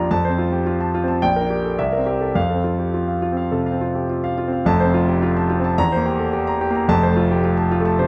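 Close, detailed microphones capture a polished, up-front grand piano, set in a recital hall with moderate reverb that lingers for about 1.7 seconds. This short cut from a longer classical piece is a virtuoso piano study in F major, heroic and sparkling in mood, moving at 107 BPM in 4/4 with a flexible, rubato feel. The solo piano carries everything from the first moment, its warm, present tone spanning a range from F1 up to Bb5. The harmony circles through F, Gm/Bb and C7 before settling back on F. The opening idea is then stated again from 4.7 seconds, passing through C7/E before returning home to F near 6.9 seconds.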